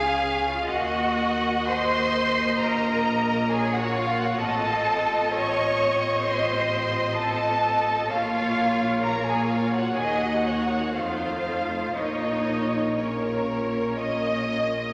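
A full string orchestra opens this yearning, elegiac slow romantic movement together, with a close, expressive first violin melody sung with vibrato and portamento over a focused, smooth-topped second violin line, distant, even violas, rich cellos and soft-attacked, distant double basses, all stretched by uneven, rubato timing and bathed in the wet reverb of a scoring stage in a passage cut from a longer piece.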